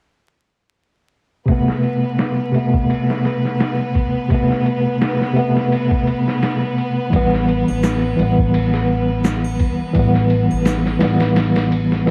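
Trip hop with a dark, cinematic mood, cut from a longer piece: a worn, slightly out-of-tune tine electric piano sits up front with tremolo, tape echo and a filter sweep, over a muffled, pitched-down sampler-style drum kit with a thumpy kick, medium-tuned snare and ride cymbal, all dulled by cassette tape and re-recorded in a small room. Behind them, a distant, earthy chamber violin section holds bowed chords with light vibrato and 12-bit sampler grit, while a very quiet flickering, granular texture drifts in at 2.1 seconds. A growly pizzicato upright bass joins at 7.1 seconds as the harmony moves from Amadd9 to Em/A, with triangle and egg shaker faint in the background, and the whole recording carries vinyl crackle and light reverb.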